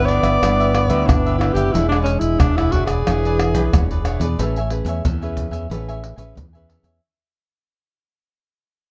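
Sunny and lively, this short samba and choro clip opens with a breathy alto saxophone carrying the melody up front, its vibrato, subtone and scooped notes set in plate reverb. A mellow trombone adds a jazz-style second line until 4.0 seconds, while a crisp, picked cavaquinho and a classical, fingerpicked nylon-string guitar in the background supply the accompaniment, a bright, direct fingered electric bass sits up front, and pandeiro, tube shaker, tamborim and a tight surdo played with hard hands ring out from a small room. Light reverb and a dark, warm production round off the sound as the piece fades out from 4.4 seconds.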